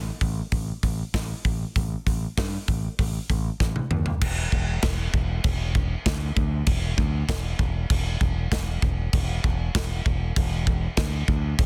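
Dry and densely limited, this relentless, aggressive heavy metal passage at 98 BPM in straight 4/4 sets an up-front, bright, growling fingered electric bass with overdrive, spanning E1 to G2, against an up-front acoustic drum kit in a small room, with punchy kick, medium-tuned snare, hi-hat, toms and crash, which enters at 0.2 s and plays a fill from 3.6 to 4.2 s leading into the second section.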